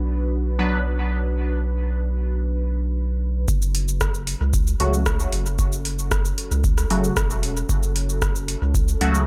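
Dub techno in F# minor at 114 BPM, this hypnotic, hazy excerpt moves in a straight 4/4 through a Bm chord before shifting to F#m at 3.5 seconds. A moody, dark ambient pad of detuned saw and sine layers with a sub octave holds slow-attack chords under chorus, built-in reverb and sidechain pumping. Beneath it, a round analog bass of triangle and sine tones sits up front, also pumping with the sidechain. A juicy, resonant sawtooth polysynth drops a brief stab at 0.6 seconds and returns at 4.8 seconds with bright, detuned stabs, carrying chorus, phaser, sidechain pumping and dub echo while a filter sweep runs across its sound from 3.5 seconds onward. At 3.5 seconds an overdriven electronic kick arrives alongside a layered deep house kit of cabasa, metallic hi-hat and rim click, the kit re-recorded in a large room and sent through overdrive and dub echo. The whole mix is bathed in an echo-heavy digital ambience.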